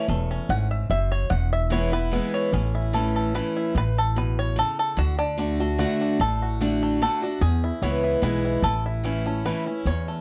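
A twangy, percussive five-string banjo takes the lead throughout this short cut from a longer bluegrass piece, its fingerpicked melody sitting up front. A bright parlour-style steel-string acoustic guitar, picked on fresh strings with an audible finger squeak, carries the accompaniment, while a woody, thumpy upright bass, played pizzicato, joins at 0.1 seconds to anchor the low end. The mood is rustic and driving in a straight three-beat metre, with the harmony circling through A, E and D before settling back on A. A moderate studio ambience surrounds the trio, and the whole recording carries the worn character of old cassette tape, with a warbly pitch drift colouring the sound.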